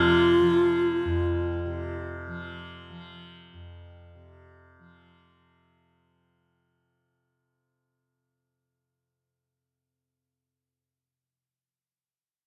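A breathy, hollow low wooden flute in the Native American style sings on F4 up front, with vibrato, over a buzzing, softly plucked tanpura drone and bell-like crotales shimmering in the background. A fade-out runs through the opening 5.3 seconds, all within a moderate concert-hall reverb. The flute falls away at 2.1 seconds and the crotales at 5.8 seconds, and the acoustic tanpura hums alone until 11.8 seconds. This fragment of meditative world music drifts in free time in F minor, tuned to A4 = 435 Hz, with a haunting mood.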